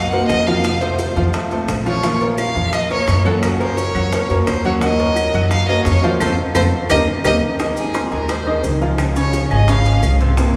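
An expressive bowed violin, close and up front with vibrato and portamento, carries the melody of this sultry, danceable Cuban son and guajira at 173 BPM over thumpy gut-string pizzicato upright bass, clear short-sustain baby grand piano arpeggios, bright fingerpicked nylon-string guitar, tight high-tuned bongos and grainy maracas in the background, and very quiet woody claves entering at 2.4 s, set in a wet cathedral reverb, as a band accent at 6.2 s and a drum fill lead into a violin solo at 7.6 s.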